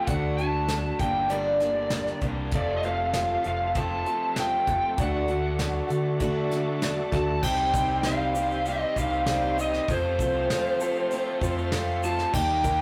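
Folk rock with a heartland rock lean, this dusty, wistful passage moves at 98 BPM in a straight 4/4, cut from a longer piece. An up-front lead guitar through a small cranked amp carries the melody with a lo-fi, overdriven bite and slapback echo, riding over a boxy parlour steel-string acoustic that is picked as accompaniment. A double-tracked, crunchy overdriven electric guitar plays a riff underneath, while a deep, round dub bass and a soft brush kit with a tight kick, medium-tuned snare, hi-hat and crash settle in from 0.1 seconds. A shouting tonewheel organ with key click, chorus vibrato and a slow rotary speaker arrives at 2.5 seconds to hold sustained chords in the background, and a grainy egg shaker joins at 7.4 seconds as the harmony turns from D toward C minor and F. The whole take sits in a moderate stone room with the rough, saturated character of a rehearsal-room recording.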